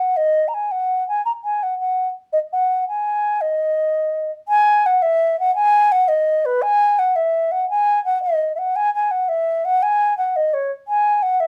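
A straight 6/8 at 112 BPM carries this lively, cheerful Celtic folk excerpt, where a solo baroque flute with a woody, pure tone, vibrato and soft attack sits up front in a reverberant studio room, playing between B4 and A#5 and moving into a new section at 4.5 s before the cut at 11.5 s.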